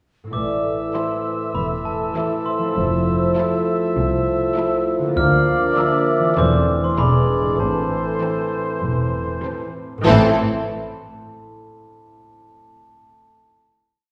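A playful, whimsical cinematic cue in A minor at 99 BPM, quirky and sneaky in mood, with a dark, bell-like glockenspiel played with soft plastic mallets carrying the melody over ringing rolled harp arpeggios, while a lush symphonic violin section joins the tune from 1.0 seconds. Mellow clarinet, cor anglais and a hollow, airy flute ensemble weave second lines, a clear chamber violin section adds its own line, and a dark bassoon, rich violas and a tight French horn section hold sustained chords above pizzicato cellos and a close, expressive double bass section. The chords move from Am through Fmaj7 and Bb/D to an E7 that resolves home, ending on a final chord from 10.0 seconds, all set back in a wet scoring-stage reverb.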